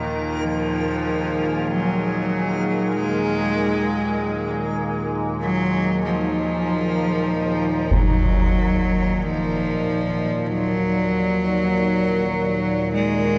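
A single clear, earthy cello sits up front in this cavernous, desolate dark ambient drone in Eb minor, bowed by one player with an airy bow and light vibrato and touched with delay as it plays a melody in its low register. Beneath it, a deep, mellow pad sustains chords built from sawtooth and sine voices with unison and a sub octave, while a resonant drone with moving overtones holds the bass; both are treated with chorus and reverb. A reversed, swelling granular texture, dreamy and bright, lingers in the background until 8.0 seconds. At 7.9 seconds a close, dry acoustic concert bass drum with dark cymbals strikes up front, its kick softened by a low-pass filter. The whole piece floats in free time inside a huge, wet reverb with a long 8.6-second decay, and this passage is cut from a longer work.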